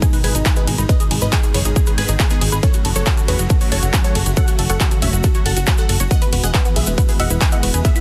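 A straight 4/4 pulse drives this emotional, driving uplifting trance excerpt. An up-front, punchy electronic kick leads the beat, joined by a big-room dance kit of handclaps, metallic hi-hats and ride cymbal, a grainy tube shaker in the background, and a funky, plucky analog bass from 0.2 seconds, with bass, hats and cymbals pumping under sidechain. Over chords moving from G#m to F#m to Eadd9, a bright, detuned unison pluck carries the melody with delay, while a tight sequenced synth with chorus, phaser and delay spins arpeggios and a mellow filtered supersaw swell sustains chords behind it, all three synths pumping too, inside digital ambience and a dense, heavily limited modern master.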